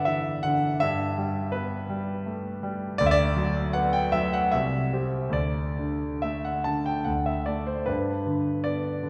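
A wet concert hall reverb, with a 2.4-second decay, surrounds this recording and places the listener further back in the room. Within that space a concert grand piano plays alone, its tone clear and polished, with a deep bass and a short sustain that keeps it present and up front. The music is a romantic nocturne in G major and 3/4, moving with rubato between 67 and 84 BPM, and its mood is nostalgic and dreamy. The piano spans C2 to A5, passing through G, Em over G, Bm over D, C and a bare D fifth before settling back on G at 7.9 seconds. Lasting just over nine seconds, this short passage is cut from a longer piece.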